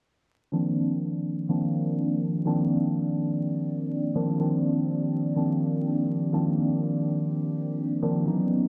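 Moody and late-night, this short excerpt of swung house at 124 BPM in C minor, tuned slightly flat to A4 = 437 Hz, sets a clean, up-front tine electric piano playing Cm11 stabs through a combo amp with phaser and low-pass filter against a warbling, nostalgic, lo-fi tape-like pad with slow attack, long release, chorus and its own reverb sitting mellow in the background, both sounding from 0.5 to 8.7 seconds as if played on a big sound system in a bare stone room with vinyl crackle.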